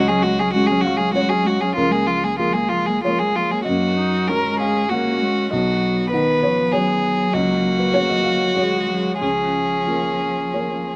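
Neoclassical piano and strings in a tender, hopeful mood, moving at 97 BPM in 3/4 with uneven beats and a rubato feel, heard as a short portion of a longer piece. A single muted violin carries the melody up front with a veiled, con sordino tone, a soft attack and vibrato, while a muted cello adds a second line with portamento, and a muted viola sits in the background beside a felt-muted upright piano whose mellow, intimate sound includes audible action noise. The chords move through C#sus4, A#m7/C#, F#add9 and B under light reverb, captured by close, detailed microphones.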